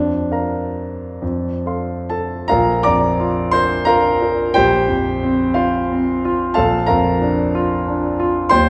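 Moving in a rubato 12/8 at 43-63 BPM in dotted quarters, this serene, dreamy romantic nocturne for solo warm concert grand piano in Bb major, tuned to A4 = 441 Hz, sets an open, up-front piano with deep bass, ranging from Bb1 to D6, in a wet recital hall with a 1.7-second reverb tail, its harmony resting on Bb and F chords and moving into a new section at 2.5 seconds, the clip cut from a longer piece.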